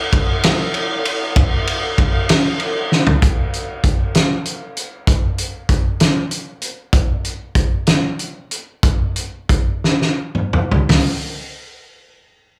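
Wistful and intricate, this short rock passage in a straight 6/8 features a loose indie drum kit of hi-hat, kick, snare, toms and ride, with a punchy kick, fat snare, dark cymbals and a gritty, rolled-off top, heard up front through a live venue's PA with moderate club reverb, marked by fills at 2.9 and 9.8 seconds and a slowing from 6.9 seconds.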